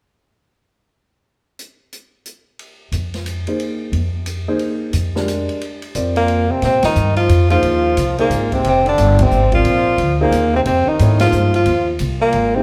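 Heard from further back in a large, wet studio room, this excerpt sets a modal jazz group in a swinging 3/4 at 178 BPM, with a searching, intense mood. The acoustic drum kit enters first at 1.6 seconds, with dark cymbals, a medium-tuned snare, a boomy kick, hi-hat and ride. A woody, thumpy upright bass follows, played pizzicato on gut strings and sitting up front. Then a concert grand piano with deep bass and short sustain joins, moving from Bb9sus4 to Bb13sus4. At 6.2 seconds a mellow tenor saxophone takes the melody with vibrato, subtone and scooped notes over a smooth top, while a brilliant, punchy trombone plays a forceful second line from a more distant, roomy position. The band hits several accents through the closing section before the cut.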